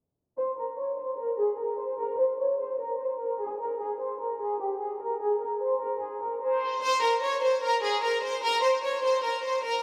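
Eerie and melancholic, this half-time hip hop fragment, cut from a longer piece, features a lush, focused studio violin section with rich vibrato playing alone up front from 0.4 to 9.8 seconds in a range from G4 to Db5, its bowed lines coloured by tape echo and set in a dreamy, low-pass-filtered mix soaked in plate reverb, with a filter sweep running until a new section begins at 6.8 seconds.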